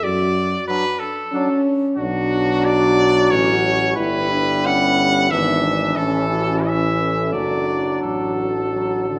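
Classical brass quintet writing in a stately triple metre, taken from a longer piece and moving with a flexible, rubato feel. A clear, punchy trumpet carries the melody up front with vibrato, though it sits at a roomy distance, while a mellow French horn with light vibrato supplies accompaniment further back. A tuba with a soft attack and smooth top anchors the bass from the opening. At 0.7 s a flugelhorn joins in the background on a second line, and a bright trombone adds further accompaniment with light vibrato. The harmony moves from D/F# through Bm, Em/G and E7/G# to A before settling on D/A, and a wet recital hall reverb surrounds the ensemble with a warm, dignified glow.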